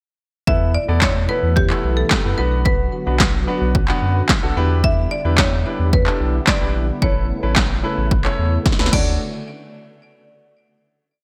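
A punchy analog drum machine drives this euphoric, carefree dance-pop piece at 110 BPM, its tape-warm kick and snare sitting up front in a four-on-the-floor beat with handclaps layered on the snare, crash cymbal accents and gated reverb, ending in a fill from 8.7 to 9.2 seconds. A round sine sub bass with a fast attack plays a syncopated figure beneath, pumping with the sidechain, while a clear concert grand piano adds short, closely voiced syncopated chords that pump as well. In the background, a silky, dark string machine holds slow-attack pads built from pulse and sawtooth waves, thickened by ensemble chorus. On top, a woody marimba with medium hard mallets on rosewood bars plays a bright, motif-based melody of call phrases through a digital delay. The chords move from Esus4 through Bm, Em7 and Aadd9 to Dmaj7 before a final hit at 9.2 seconds, all framed by light reverb and a bright 1980s-style digital production.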